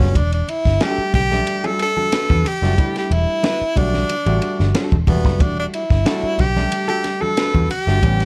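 A breathy tenor saxophone sits up front with a soft attack, vibrato and scooped notes, carrying a jazz-style solo melody over a hypnotic, cool funk groove at 91 BPM in E minor, resting on an Em11 chord. Beneath it, a foam-muted vintage picked electric bass gives a round, dark low end, and an overdriven clav through a combo amp adds stringy, mellow stabs. A compact cocktail drum kit with a high-tuned snare, tight kick, hi-hat and ride has a smooth, rolled-off top, very quiet low-tuned congas add thick-skinned warmth, and a clean, compressed hollow-body jazz guitar accompanies from 0.8 s to 7.7 s, all under light reverb in this short cut from a longer piece.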